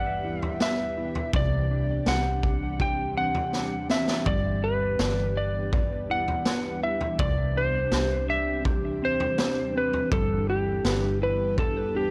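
Dry and gritty with a hardware edge under a studio reverb, this floating dream pop excerpt sways between G6 and Cadd9 chords. A dark, slightly broken-up slide guitar carries the compressed melody up front through analog delay. It sits over an airy, detuned pad thick with ensemble chorus and tremolo, a clean fingered electric guitar tracing arpeggios through subtle chorus and delay, a round, foam-muted bass, and a saturated small-room garage kit with a punchy kick that enters at 0.4 s, plays a fill at 3.5 s and stops at 11.8 s.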